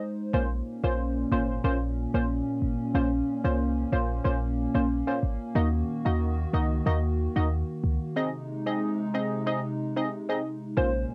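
The deep, boomy 808-style bass sits up front in this bouncy, tough dancehall excerpt in Bb minor at 92 BPM, carrying the low end beneath crisp, detuned wavetable chord stabs and a hollow, airy pad with chorus and a flute-like softness. The harmony moves from Bbmadd9 to Ebm to Ab, with a break from 8.2 s, and a round, warbling FM synth lead enters at 10.8 s with a single bright C5. The home cassette recording gives the whole a vintage grain and a moderate booth ambience.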